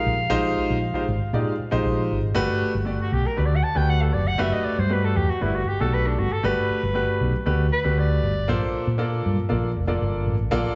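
Soprano saxophone, grand piano and fingered hollow-body electric bass open this bright, funky electric jazz fusion excerpt at 117 BPM in G major, where the breathy, whispered saxophone with scooped notes and slapback echo solos from 2.4 s over clear piano accompaniment with audible action noise, also echoed, and a round, dark bass, all heard through a live club PA with a muffled top end and moving from Bb13sus4 to Gmaj9 and then Bbmaj9.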